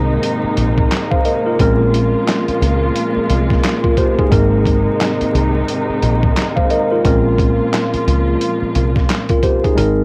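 A mellow, slightly out-of-tune tine electric piano, a dark, lush bowed string section and a round, punchy foam-muted fingered bass open this soulful boom-bap hip-hop excerpt at 88 BPM with a 16th-note swing, joined by a gritty, pitched-down sampler-style kit with a thumpy kick, handclaps and hi-hat from 0.2 seconds, all moving between Abadd9 and Bbm7 on a cassette home recording with vinyl crackle until the kick drops out at 9.8 seconds.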